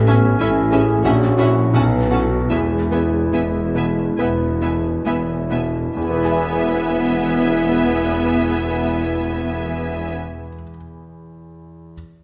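Lush and passionate, this romantic classical passage for piano and orchestra in E major moves in rubato 4/4 between 64 and 95 BPM, slowing over its first 6 seconds, as a bright, brilliant grand piano carries the up-front melody with long sustain and audible action noise until 12.0 seconds, over distant violins singing a vibrato melody alongside a second violin line, focused violas in accompaniment, a dark clarinet second line, soft-attack French horns holding very quiet sustained chords, and a bass of close cellos, smooth double basses and mellow tuba, set in a wet concert hall reverb before the orchestra stops at 10.1 seconds.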